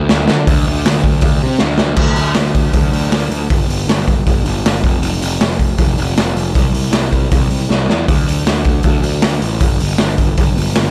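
Rebellious and energetic, this short clip from a longer punk rock track drives forward in a straight 4/4. A fuzz-drenched picked electric bass sits up front, its tone bright and growly with overdrive biting into every note as it works through a low register. A raw garage drum kit shares the foreground, recorded in a small, pumping room with a punchy kick, a medium-tuned snare, hi-hat, and dark crash cymbals under a rolled-off top. The kit sounds saturated and gritty, opening with a quick fill, then adding another around 1.6 seconds as a brief opening passage gives way to the second section, and a further fill around 7.7 seconds. The mix is dry and close, keeping the whole performance blunt and immediate.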